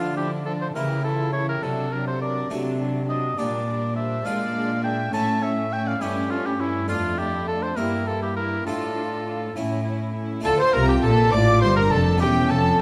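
A clear, punchy oboe sits up front, carrying the melody in a dramatic, driving baroque-style concerto movement in D minor, moving at 68 beats per minute in a straight 6/8. Beneath it, a chamber violin section also carries a melody line in the background while a second violin section plays a supporting line, both with light vibrato and a gut-string, period-style tone. A dark, nasal viola section and a dry, full-sounding harpsichord with two sets of strings provide accompaniment, and a somewhat distant cello section holds the bass throughout. At 10.4 seconds a rich double bass section joins, deepening the low end as the harmony returns to D minor before closing on A7 over E. The whole is set in a wet recital hall reverb with a dark production, and the recording is cut from a longer piece.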